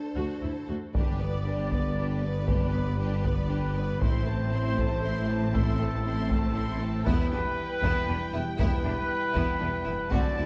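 A warm production with moderate scoring-stage reverb frames this relentless, dramatic fragment of epic orchestral film score in 6/8. Lush, vibrato-laden violin sections carry an expressive melody and a brighter, intense second line over mellow French horn chords, focused violas, and background cellos and double basses. From 0.9 seconds, distant trumpet stabs, a dark tuba and hard-stick taiko drums ringing in a large room join as the harmony moves from G through Am to Em.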